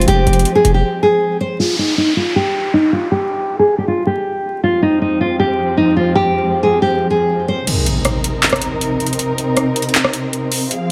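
This brief cut from a dark, melancholic trap piece in a half-time feel opens with a fingerpicked nylon-string guitar melody, classical in tone with fresh strings, softened by a low-pass filter and delay. Beneath it, a bowed studio string section holds an Fm chord, while a punchy, heavy 808 hit with a noise layer and a short burst of trap drums sound together, all up front. The 808 and drums drop away within the first second, and at 1.6 s the strings fall silent too, leaving the guitar over an electronic downlifter during a filter sweep with the harmony suspended. The lush, woody strings return with vibrato on Fm at 4.6 s, and the guitar bows out shortly before the drums come back at 7.7 s with metallic hi-hats, handclaps, rim clicks and a crash, tape-warm in character, alongside an impact over a Cm7 string chord that carries to the end. Vinyl crackle and light reverb colour the whole recording.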